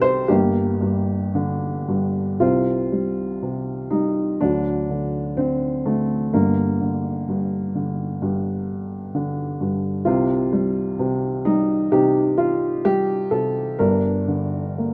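Classical solo piano in a lyrical, dark and wistful mood, moving at a slow 63 BPM in 4/4 with an uneven, rubato feel in C dorian, tuned to A4 = 436 Hz. A single upright piano with a woody, boxy tone sits up front, ranging from G1 to C5 as the harmony drifts through Gm, C5, D and Cm. A new passage begins at 2.4 seconds, and the piano closes this short cut from a longer piece with a fill at 14.8 seconds, heard through close, detailed microphones with light reverb.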